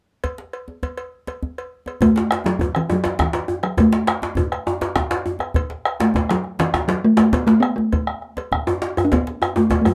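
A modest small-room ambience frames this earthy, powerful passage from a West African drum ensemble in 12/8. A metallic, close cowbell and a deep, soft-handed djembe sitting in the background open the passage. At 2.0 seconds a resonant talking drum takes the melody up front with plate reverb, joined by a round bombo and a second djembe that is medium-tuned, carries metal rattles, and has a vintage, band-limited edge.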